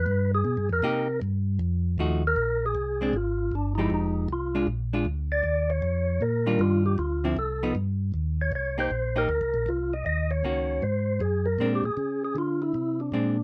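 This swinging, bluesy jazz passage opens with tonewheel organ alone, a percussive organ voice carrying the melody through a fast rotary speaker while a mellow organ supplies the bass through a slow one. The melody organ sounds soft and flute-like, with third-harmonic percussion and key click, and the bass organ is round and dark beneath it. At 0.8 seconds a hollow-body jazz guitar enters on accompaniment, its picked electric tone clean and shadowy. The tune moves at 156 BPM in 4/4 with a 66 percent swing on the eighth notes, rooted in B-flat mixolydian and drifting through chords such as G7b9, Ebmaj9, Ebm7 and Ab7 before settling on Bb9. All three parts sit up front in a light reverb, and the recording is cut from a longer piece.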